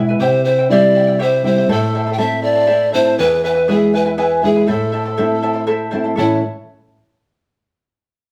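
Earthy and wistful, this short cut from a longer Andean folk piece moves in an unhurried 6/8 at 80 BPM in A minor, tuned slightly high to A4 = 441 Hz, over a C, Am, E, Am progression. A breathy, hollow bamboo pan flute carries the tongued melody up front from 0.2 seconds, its straight tone marked by a chiff, while a warm, thumb-plucked classical nylon-string guitar sits close beneath it. A mellow fingerpicked charango adds a shimmering glow from its double strings, some octave-doubled, and the band plays live in one room within a wet studio reverb.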